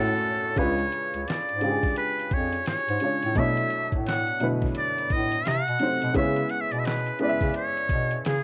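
This smooth neo-soul R&B excerpt opens with a band accent from a buzzy, metal-muted trumpet, a woody, slightly detuned upright piano and a mellow bass clarinet, before a gritty, sampler-style drum kit of thumpy kick, fat snare, hi-hat and handclaps joins at 0.6 seconds with a swung sixteenth-note feel. The up-front trumpet carries the jazz-style melody with light vibrato and a soft attack, the worn piano accompanies through chords such as C#7b9, Bm11 and Cdim7, and the distant, roomy bass clarinet holds the low end with scooped notes. Cassette tape colours the trumpet, piano and drums, while plate reverb on the trumpet and piano adds a warm glow to the home-recorded sound.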